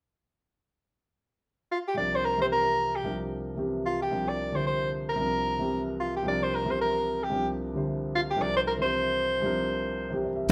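This fast, spiritual modal jazz excerpt opens at 1.7 s with a mellow soprano saxophone carrying the melody, its distant, roomy tone sitting up front in a solo jazz voice. A moment later the concert grand piano joins in accompaniment, intimate and natural, with deep bass, long sustain and the audible noise of its action. The harmony starts unaccompanied by chords, then settles onto C9sus4 at 2.0 s, giving the C mixolydian line a searching, open quality at 225 BPM with a light swing on the eighths. A dark, smooth hi-hat appears only at 10.5 s, tucked in the background. The band plays live together in a stone room whose wet reverb surrounds the ensemble.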